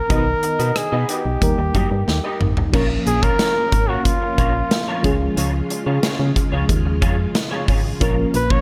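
1980s-style pop with an urgent, nostalgic mood, cut from a longer piece, led by an up-front, close-miked flugelhorn with light vibrato and digital delay over a warbling, mellow FM electric piano with tremolo and phaser. A punchy, round FM bass and a big rock drum kit bathed in gated reverb form the foundation, with a drum fill at 2.1 seconds, while a dark, slightly broken-up electric guitar through a small old amp plays a lo-fi riff with ensemble chorus and delay. At 3.1 seconds a lush string machine enters in the background with sustained chords, and the whole mix sits in a small room ambience with light reverb.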